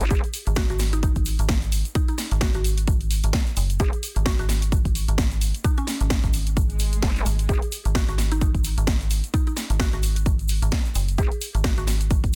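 Swaggering and gritty, this bass house excerpt rides a swung 4/4 groove at 130 BPM, cut from a longer piece. A punchy electronic kick sits up front beside a metallic, dark FM bass that holds between F#1 and G#1 from 0.5 seconds on, its tube saturation and sidechain pumping giving the low end its grind. Short bursts of a nasal, resonant vowel-sweep wobble bass, chorused and pumping too, cut in around 7.0 to 7.6 seconds and at a few other brief moments. A house drum kit adds a cracking snare and warm hats, while a grainy egg shaker ticks in the background. Above it all, a woody, round synth pluck with a mallet-like attack traces a mellow line between C#4 and G#4 through analog chorus and digital delay, and an electronic swell enters at 6.7 seconds within a dense, heavily limited master set in digital ambience.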